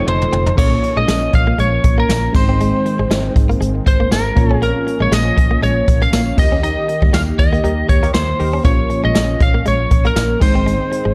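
A twangy, slightly broken-up lead guitar carries the melody up front in this urgent, moody 1980s-style pop passage in Bb dorian, moving at 119 BPM with a light 16th-note swing over a Bbm, Ab and Eb progression. Brushed drums with a boomy kick and dark cymbals open on a fill and sit prominently beside a round, foam-muted fingered bass, while a bright, direct-recorded clean guitar riff with analog chorus, detuned sawtooth keys and a smooth, slow-attack pad fill the background. A band accent begins at 6.6 seconds, and funky, warbling polysynth stabs appear briefly from 7.6 to 8.6 seconds, all set in a dark production with light reverb and small-room ambience in a fragment cut from a longer piece.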